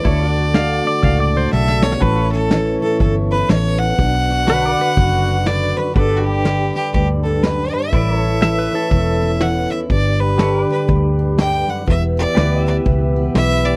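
Honky-tonk and classic country at a swung 122 BPM in 4/4, this sunny, down-home excerpt puts a biting, up-front bowed fiddle with light vibrato over picked full-bodied jumbo acoustic guitar, round foam-muted electric bass, a mellow flute-like tonewheel organ turning on a slow rotary speaker, and a background pedal steel holding lush chorused chords, while a second bright, twangy pedal steel adds a line from 0.6 to 5.4 seconds and again from 8.4 to 9.3 seconds and a dark brush kit with a punchy kick drops a fill at 1.5 seconds, all in a dry, close 1970s-style studio sound.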